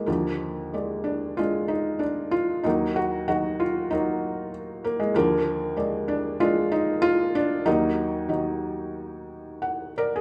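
The rhythm moves with uneven beats and free rubato over a 4/4 pulse at roughly 95 BPM, giving this brief classical passage a lyrical, breathing quality. A felt-muted upright piano plays alone throughout, ranging from Eb2 up to Gb5 in Eb harmonic minor, tuned to A4 = 442 Hz. Its tone is soft, mellow and intimate, with short sustain, a thin felt character and audible action noise, and the instrument sits up front in the mix. The harmony alternates between Bb7 over an Eb bass and Eb minor, settling into a brooding, moody atmosphere. A short piano fill arrives at 9.3 seconds before the recording, cut from a longer piece, ends at 10.2 seconds. The piano sits in a moderate recital-hall reverb with a 1.4-second decay, lending a natural sense of a church or concert hall around it.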